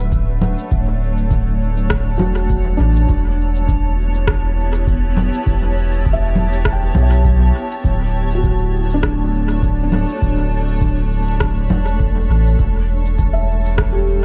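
An echo-heavy digital ambience surrounds this deep, spacious ambient dub excerpt, which moves at 101 BPM in 4/4 with a swung sixteenth-note feel. A cloudy, blurred granular pad holds sustained chords throughout, its detuned unison voices evolving beneath built-in reverb and a vintage 12-bit sampler grit. Alongside it, a felt-muted upright piano plays soft, dark, intimate arpeggios through an analog delay. Up front sits a round, soft dub sub bass with a fast attack, while a tape-warm electronic kick, re-recorded in a small room, stays in the background. Overdriven electronic cabasa, congas and rim click run from 0.1 to 13.9 seconds through a dub echo, as the harmony sways between Dmaj7 and Em6.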